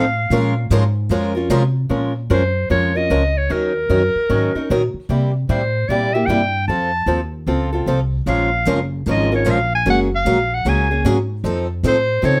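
A light reverb surrounds this fiery, swinging excerpt of acoustic string swing, where an up-front clarinet with breathy tone, vibrato and scooped notes carries the melody over a boxy, finger-squeaking parlour guitar and a woody, thumpy pizzicato upright bass on gut strings, while a second, brighter guitar with fresh strings drops out at 1.6 seconds and returns at 8.3 seconds.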